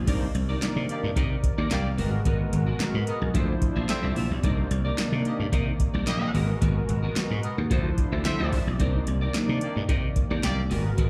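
Up front, a punchy, growly slap bass drives this slick, funky stretch of early-eighties boogie funk, cut from a longer piece. Beside it sits an overdriven analog drum machine with a deep kick, punchy snare, metallic hi-hats, handclaps and crash cymbal, the snare, clap and hats carrying a short room. A mellow synth brass, round and detuned with ring modulation and a filter sweep, plays accompaniment through chorus and slapback echo. An electric guitar at the edge of break-up picks a compressed riff, while a smooth, warbling vintage pad holds sustained chords in the background over a cycle of minor ninth chords. From 0.9 seconds a tight horn section with light vibrato adds a clear second line through tape and slapback echo, all heard as a live gig through the venue's PA with club reverb.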